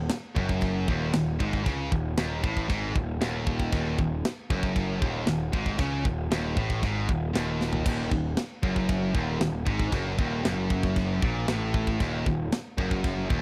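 A straight 4/4 pulse at 116 BPM drives this relentless, epic heavy metal excerpt in Eb minor, where a scooped high-gain guitar sits in the background behind an up-front tight distorted guitar, both playing a riff between Eb2 and Db3 over a growly, fuzzed picked electric bass, while a tight acoustic drum kit with bright cymbals, a medium-tuned snare, china, crash and toms enters at 0.1 seconds and breaks into a fill at 7.6 seconds, all captured in a dry, close 1970s-style studio sound.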